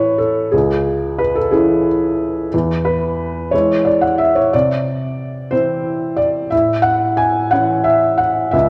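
Worn, warbling cassette tape with drifting pitch and a moderate scoring-stage reverb frames this tender, intimate neoclassical minimalist piece at 60 BPM in a rubato 6/8, where a solo felt-muted upright piano sits up front with a soft, boxy tone and audible action noise, moving through A major, C-sharp minor and E before a C major chord arrives at 4.5 seconds and the harmony settles back on A at 6.5 seconds, cut from a longer piece.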